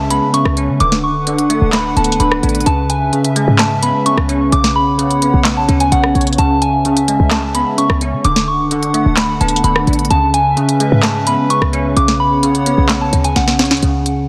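A bright, bell-like tine electric piano sits up front, carrying the accompaniment through a chorus and a low-pass filter in this brooding, melancholic trap excerpt with a half-time feel. Above it, a soft synth bell with a pure, warbling vintage FM tone carries the melody, colored by chorus and tape echo, while a hollow, airy pad holds flute-like sustained chords low in the mix. A short 808-style bass gives punchy, tight low end, and a trap drum kit with a sharp snare, crisp hats, handclaps and rim clicks enters at 0.1 seconds, roughened by 12-bit sampler grit and soft clipping on the snare. The harmony moves through C#m7, D6 and Bsus2, and a drum fill from 13.4 to 13.8 seconds closes the passage. Light digital reverb surrounds a dense, heavily limited modern master.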